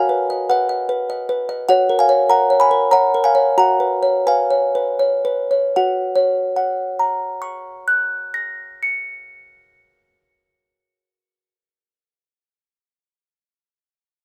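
In a straight 3/4 lilt between 76 and 101 BPM that slows from 0.8 to 5.8 seconds, this innocent, dreamy classical lullaby in F# major is a short cut from a longer piece, carried by a solo music box playing from 0.0 to 11.8 seconds, delicate, tinkling and plucked with a small-box character, sitting up front in a dark production with light reverb as it moves from a B-over-F# chord to F# before turning to a new passage at 5.8 seconds.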